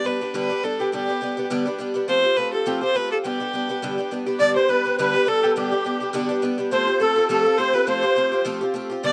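Swung eighth notes in a brisk 4/4 drive this bright, rollicking Celtic folk tune, cut from a longer piece. A picked twelve-string acoustic guitar sits up front from the first second, its woody, boxy archtop tone and octave-doubled shimmer carrying the accompaniment with a slapback echo, while the harmony moves between G and Fadd9. Over it, a single bowed fiddle plays the melody in a smooth, even voice with light vibrato, also placed up front. At 4.4 s the tune repeats, and a reedy musette accordion joins with a second line in the same register as the fiddle, its vintage, band-limited sound wavering from the wet musette tuning and carrying its own slapback echo. Recorded in the open air with only a light reverb, the passage stays lively and close.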